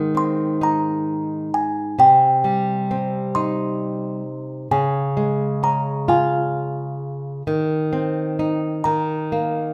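A delicate, slightly out-of-tune music box carries the melody over a bright, boxy flamenco guitar, fingerpicked with audible finger squeak, in this tender lullaby clip in Ab major. The slow 6/8 sway at 44 BPM moves gently through Abadd9, Cm, Db and Ab/Eb before resting on Eb5, with the mellow music box sitting just above the up-front guitar. A moderate recital hall reverb gives the children's piece a soft, spacious glow.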